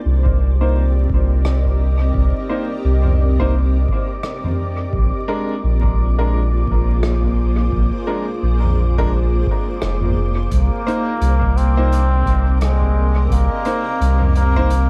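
Ambient dub at 86 BPM in C minor with a swung sixteenth feel, this spacious, hazy clip floats on a cloudy granular pad holding Cm7 and Bb7 chords over a deep, round sub bass up front, a deep electronic kick in the background and a roomy soft-mallet kit of hi-hat, rim click and toms with dub echo, while woody upright piano stabs pass through a low-pass filter and echo, a breathy wind-like noise layer hovers in the background, and a nasal straight-muted trombone with light vibrato enters at 10.5 seconds, all within an echo-heavy small-room mix flecked with vinyl crackle.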